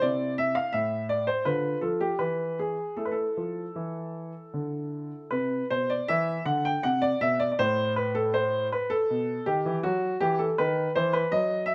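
Rubato, unevenly placed beats at about 79 BPM in 4/4 carry this grave, flowing baroque-style suite movement, a brief fragment for solo baby grand piano whose open, up-front tone and long sustain sit in light reverb as the music moves from A minor into E minor at 6.1 seconds.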